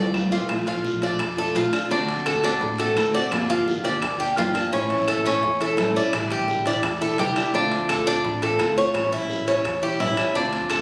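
Latin Cuban son in a guajira vein, this nostalgic clip from a longer piece opens with a brief drum fill as the picked Cuban tres, up front with its metallic double strings, spins arpeggios over a boxy parlour steel-string guitar picking chords such as Bbmaj7, D7, Gm7 and A7. A dark, thumpy pizzicato upright bass on gut strings sits low beneath ringing metal-shell timbales, very quiet high-tuned bongos, and woody claves and a raspy guiro in the background. The sound has a moderate studio ambience, with the phone-in-the-room capture given added reverb and compression.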